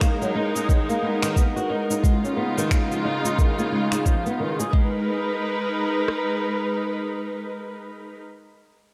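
An up-front organic electronic drum kit with a soft, tape-warm kick and rim click anchors this earthy, hypnotic organic downtempo excerpt at 89 BPM in G# dorian, with a swung sixteenth-note feel, joined by small-room electronic finger snaps and cabasa until 4.7 seconds, a fingerpicked flamenco guitar with fresh strings and audible finger squeak playing arpeggios through analog chorus, a low-pass filter sweep and diffuse ambient delay until 5.0 seconds, and a dark, veiled, con sordino string section holding bowed chords with vibrato and sidechain pumping, the mix drenched in dreamy plate reverb.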